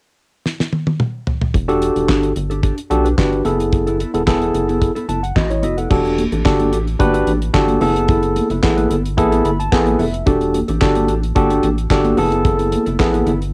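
A damped seventies drum kit opens this late-night boogie funk excerpt with a fill at 0.5 seconds, its fat snare and tight kick sitting up front alongside hi-hat, toms, crash and handclaps, all carrying a dry, cassette-tape character. At 1.5 seconds the groove settles in at 110 BPM in a straight 4/4, as a rubbery square-wave bass with a dark, bouncy filter pluck holds down the low end and a mellow, compressed electric guitar riff sits in the background under a lush chorus. A barky tine electric piano, bright and clean through a combo amp with plate reverb, leads the accompaniment up front and drops in short fills, the first closing out the opening groove. The harmony rocks between Em11 and F#m11, giving the funky mood a smoky, unresolved lean. From 5.9 seconds, high-tuned congas with a thin, hard-handed skin join in the background, adding lift to the home-recorded cassette sound through to the cut.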